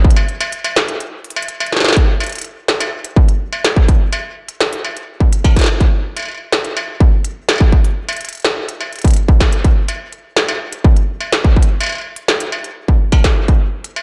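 A distorted electronic kick sits up front from the start of this glitchy, eerie IDM fragment, cut from a longer piece, its grit heard through a large room and light reverb. An industrial drum kit joins at 0.1 seconds with a clanging snare, crisp hi-hats, shaker and struck metal, all trailed by a diffuse ambient delay. After a brief break between 1.0 and 2.0 seconds, the straight 4/4 groove carries on, with the kick dropping out at 13.6 seconds.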